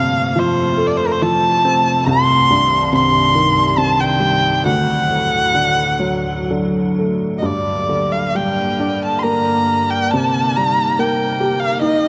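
A focused, bowed erhu carries the longing, mournful melody of this Celtic slow air up front with vibrato and portamento, over a clear, woody, slightly detuned upright piano and an icy, crystalline glass pad with chorus, all set in a wet church reverb in a rubato 3/4 fragment cut from a longer piece.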